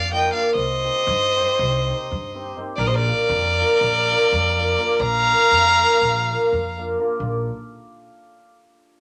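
Balkan folk in an exuberant, wild 9/8, cut from a longer piece, where a bright, nasal violin with light vibrato and an airy bow carries the melody up front over a smooth-topped second violin, shimmering hammered cimbalom and a thumpy, woody pizzicato upright bass on gut strings, all in a moderate club reverb, with both violins stopping at 6.8 seconds as the cimbalom and bass carry on to 7.5 seconds.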